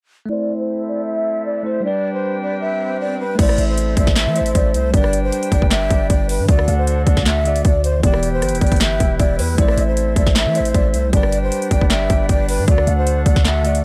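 A dry, gritty recording opens on a breathy concert flute melody over a bell-like tine electric piano and a pure flute section holding chords, all three dulled by a low-pass filter as a filter sweep runs, and a background swell rises at 2.5 seconds. At 3.4 seconds this menacing, eerie half-time trap groove at 155 BPM in A dorian drops in with an overdriven, up-front drum kit of hard-clipped kick, sharp snare, metallic hats, handclaps, rim clicks and crash, plus a punchy, heavy 808-style bass. A smooth gliding lead with chorus and tape echo sits quietly in the background, moving through Am, G, D and Em.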